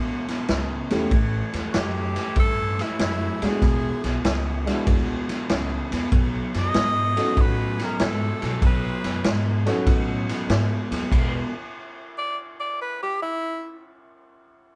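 A swung shuffle in four drives this swaggering, rollicking electric blues, with an overdriven hollow-body guitar riff, woody pizzicato upright bass and a vintage kit with a punchy kick and dark cymbals setting the groove while a mellow, slightly detuned, boxy upright piano comps beneath a breathy, close-miked tenor saxophone that enters at 1.7 seconds with scooped notes, then the band hits a stop at 11.1 seconds and the saxophone carries on to 13.8 seconds, the group heard live together in one room with light reverb.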